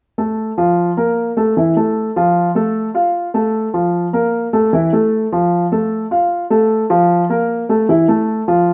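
Latin piano excerpt with a sultry, nostalgic mood, featuring a solo grand piano, dark and mellow, up front in a moderate large-studio reverb as it cycles through F, Fadd11 and A5 chords in a straight 4/4 feel from 0.2 to 8.7 seconds.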